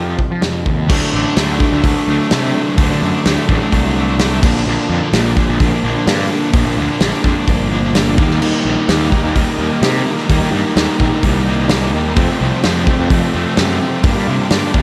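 A growly, punchy fuzz bass and a bright, crunchy overdriven guitar riff with harmonic tremolo open this dark, brooding quiet-loud alternative rock passage, and up-front acoustic drums with a tight kick and rolled-off top come in at 0.2 s to drive it. Meanwhile, a twangy clean guitar arpeggio with tape echo stops at 0.9 s as a thick distorted fuzz guitar riff enters in the background, and a very quiet, gritty tonewheel organ on slow rotary speaker adds sustained chords from 8.4 s.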